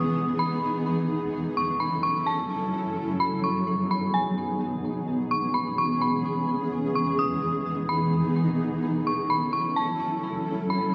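This hip hop excerpt moves at 128 BPM in 4/4 with a half-time feel, and its mood is hazy and ethereal. A granular cloud pad holds sustained chords throughout its 10.9 seconds, sitting up front with a cloudy, blurred, full-bodied tone, slow attack, long release and its own built-in reverb. Over it, a dark detuned synth bell carries the melody in a high register, its eerie, inharmonic, warbling FM voice shaped by chorus, a low-pass filter and tape echo. The harmony cycles through Emaj7, F#m7, G#m7 and C#m7 before returning to Emaj7 at 6.7 seconds and F#m7 at 8.6 seconds. A lush hall reverb with a 2.4-second decay bathes the dark production, wrapping the passage in a warm haze.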